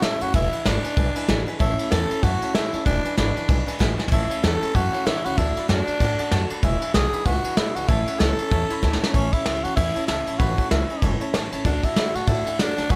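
Swung eighths in 4/4 drive this rowdy, rollicking rockabilly, where a raspy, growling tenor saxophone carries the melody up front over a soft brushed drum kit with dark cymbals, a woody, thumpy pizzicato upright bass, a picked dreadnought acoustic guitar with finger squeak in the background, and a brilliant upright piano that adds fills at 6.0 and 11.0 seconds, all set in light reverb.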